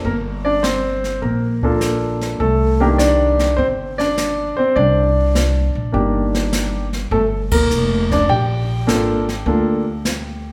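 Late-night and moody, this is a jazz piano trio excerpt in G minor, swinging at 102 BPM in 4/4 and cut from a longer piece. A clear concert grand piano carries the melody from 0.1 seconds, ranging from Eb3 up to G5, its tone natural with deep bass and set up front in the mix. The upright bass plays pizzicato on gut strings, woody and thumpy, sitting close and prominent in the low register between F1 and D2. A jazz kit played with brushes keeps time underneath, with a medium-tuned snare, a boomy kick, hi-hat and ride cymbal. The harmony moves from Gm7 to Cm9 at 2.4 seconds and back to Gm7 at 7.1 seconds, with a band accent landing at 7.4 seconds, all heard in a reverberant recital hall with a 1.5-second decay.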